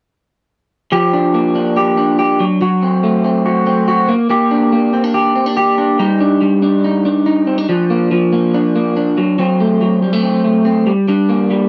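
A lone electric guitar through a small old amp, slightly broken-up, picked and compressed, sits up front in this wistful, bittersweet indie pop fragment, its analog chorus and slapback echo colouring a moody chord walk from Gm7 through F#dim, Bb6 and a rootless Cmadd9 before settling on Gm at 10.9 seconds, all captured in a dry, close 1970s-style studio sound with light reverb.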